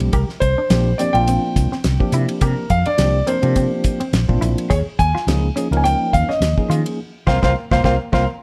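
A dark production with light reverb frames this brief, slick and bright passage of electric jazz fusion, cut from a longer piece and moving at 105 BPM in 4/4 with a 16th-note swing. Up front, a concert grand piano carries the melody with an intimate, smooth, vintage tone, its action noise audible and a slapback echo trailing each phrase. Beneath it, a bell-like tine electric piano supplies clean, direct accompaniment, while a round, amped fretless bass anchors the low end. A dry, damped 70s drum kit with a fat snare and tight kick sits forward, working hi-hat, ride cymbal, snare and kick, and a clean, picked electric guitar adds compressed, twangy stabs softly in the background with a subtle chorus. The harmony moves from C9sus4 to Eb9sus4 and settles on C7sus4 as the band hits an accent at 7.0 seconds, with a drum fill at 8.1 seconds closing the passage.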